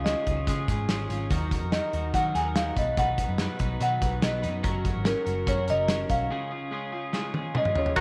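Youthful and breezy, this jangly indie pop excerpt moves at 144 BPM in a straight 4/4. A woody rosewood marimba carries the melody with slapback echo over a clean, compressed twelve-string electric guitar, bright, twangy arpeggios from an electric guitar through a small old amp, and a dark, round, foam-muted bass with tube saturation, while a loose drum kit with a punchy kick and dark cymbals sits up front from 0.1 seconds. The chords move from C# through D#m, B and F#, and a break at 6.3 seconds leads into a drum fill at 7.1 seconds, with a buzzy overdriven combo organ arriving at 8.0 seconds, all set in an echo chamber reverb.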